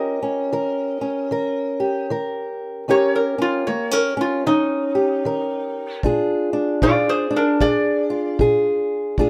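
A bright, nasal resonator slide guitar, played up front with a steel bar and fingerpicks, carries the melody over a dark, woody, boxy fingerpicked ladder-braced acoustic guitar on old strings in this laid-back, swaggering country blues fragment with a swung 4/4 feel, moving from Eb7 to Bb7 as a punchy brushed kick drum joins at 6.0 s in a rough home-demo sound.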